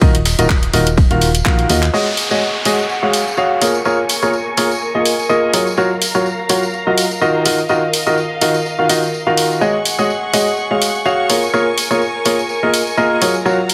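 A swung 4/4 house groove opens this soulful, energetic piano house excerpt, with a punchy, up-front electronic kick, a round FM bass and a gritty, pitched-up breakbeat kit carrying the first 1.9 seconds, capped by a drum fill, while house-kit handclaps and hi-hat and a band-limited tambourine run throughout. A clear, slightly worn concert grand plays the riff from the start with sidechain pumping, a low-pass filter and delay, and at 1.9 seconds a bowed studio string section enters on sustained, vibrato-tinged chords under a filter sweep, alongside an electronic downlifter. A lush hall reverb surrounds the mix as the chords move from Ebmadd9 through Ab7sus4, Bbm7 and Gbmaj7.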